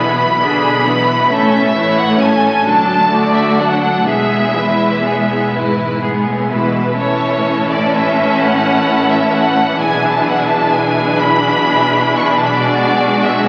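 Through the crackle of a very old 78 rpm record, a slow, rubato romantic movement for string orchestra in 6/8 unfolds in a lyrical, serene mood: clear, up-front violins carry an intense, vibrato-rich melody above a second violin line and an expressive, close viola accompaniment, while a focused cello section sits distant in the background and a soft-attacked, warm double bass section adds depth beneath, every part bowed and bathed in a wet concert-hall reverb.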